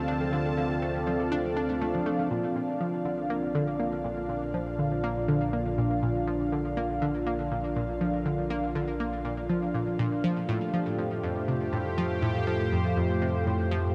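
A full-bodied, detuned sweeping resonant pad with chorus carries sustained chords through this expansive, luminous excerpt of ambient, sequencer-driven space music, joined by a bright, round analog pluck riff with chorus and tape echo, a vintage, warbling analog drone bass, a mellow, ringing concert harp playing very quiet arpeggios, and a very quiet pulsing gated texture that ends at 2.3 s, all set in a vast, echoing space with a cassette-tape character.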